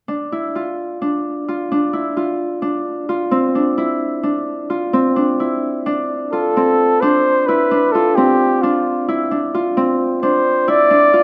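Urgent yet hypnotic, this contemporary instrumental excerpt moves at 262 BPM counted in eighths, in an asymmetrical 7/8 with a straight feel. A thumb-plucked Celtic harp opens alone at 0.1 seconds, its ringing arpeggios sitting up front in a compact middle register and outlining a shift from Dm to Cadd9. At 6.3 seconds a breathy flugelhorn enters with a jazz-style solo melody, slightly louder than the harp and carrying light vibrato and scooped notes. Both instruments share a warm character, and they play together until the fragment breaks off at 11.2 seconds. A moderate recital hall reverb with a 1.8-second decay gives the pair a sense of open space.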